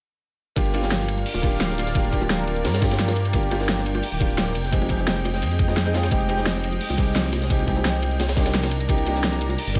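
Gritty breakbeat, overdriven pop kit and knocking electronic kick drums drive this melancholic, dreamy liquid drum and bass excerpt at 173 BPM in G phrygian, where a deep, rumbling detuned saw bass sits up front beneath a soft felt-muted upright piano with audible action noise and delay, a lush chorused unison pad entering at 1.1 seconds, and very quiet, round low-tuned bongos, all in a small room over Gm7, Fm7 and Cm7.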